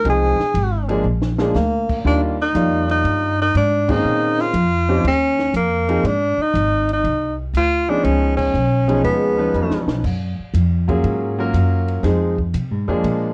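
A warm tenor saxophone opens this swinging small-group jazz excerpt with a short solo, heard over clear grand piano, dark pizzicato upright bass and a compact cocktail drum kit at 120 BPM in 4/4. The saxophone sits up front with a forceful tone, scooped notes and vibrato, carrying the melody until 9.8 seconds while the natural-sounding piano accompanies and the woody bass holds the low end. The drums sound smooth and rolled-off in a small room, with a high-tuned snare and a punchy kick, adding fills and band accents along the way. A breathy, distant trombone slips in at 9.0 seconds on a whispered Ab3 in the background. The harmony moves from Fm7 through Ebmaj9 and Db9 to Gbmaj9 before returning to Fm7, and worn cassette tape gives the whole recording a warbly pitch drift under light reverb.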